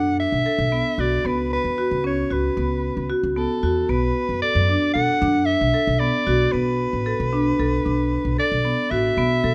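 In a straight 5/4 at 114 BPM, this pensive, hypnotic contemporary chamber piece in B minor sets a clear soprano saxophone melody with vibrato, scooped notes and a smooth top against percussive hard-mallet marimba arpeggios in a boxy small-room sound and a woody, thumpy pizzicato upright bass on steel strings, all three up front under light reverb and close, detailed microphones as the harmony moves from Bm7 to F#7sus4/C# and back to Bm7 at 3.9 seconds in this short cut from a longer piece.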